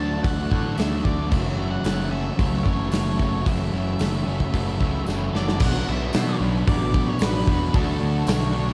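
A hazy, dreamy shoegaze and dream pop rock excerpt at 112 BPM, where a dark octave-fuzz lead guitar with analog delay carries the melody over stacked overdriven guitar riffs (one hollow-body with reverse reverb, one with subtle chorus, one bright and double-tracked), a compressed twelve-string electric guitar arpeggiating until 5.6 s, a swirling phased analog pad, an up-front fuzz bass, a punchy big-room drum kit with a fill at 5.1 s, and a jingly tambourine, as the chords move from Dmaj7 and F#m7 to Bmadd9 within a dark studio reverb.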